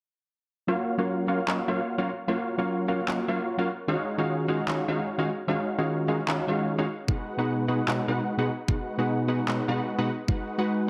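A half-time future bass groove, cut from a longer piece, sets up-front electronic handclaps from 1.5 s beneath punchy, detuned supersaw stabs with a filter sweep and a worn, slightly out-of-tune tine electric piano, both pumping with sidechain and trailed by digital delay, before a knocking electronic kick arrives at 7.1 s, all as euphoric, lush chords move from F#maj7 through D#m11 and B6 to G#m7 in a roomy, heavily compressed radio sound.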